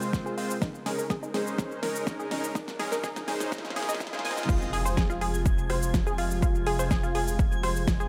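This emotional, bittersweet progressive house passage at 124 BPM in F minor opens with a smooth, chorused analog pad, soft detuned supersaw stabs tinged by cassette tape and delay, and an overdriven pop drum kit with a fat snare and metallic hats. A punchy, up-front electronic kick and a lush unison pluck arpeggio join almost at once, as filter sweeps on the pad, supersaw and pluck, a drum fill and a very quiet riser and swell drive the build-up. At 4.5 s the drop lands with an impact and a round, deep analog bass, the supersaw stops at 4.7 s, and a sparkling granular texture shimmers in the background from 5.0 s, with sidechain pumping moving the pad, supersaw, pluck, bass and texture inside a light digital ambience.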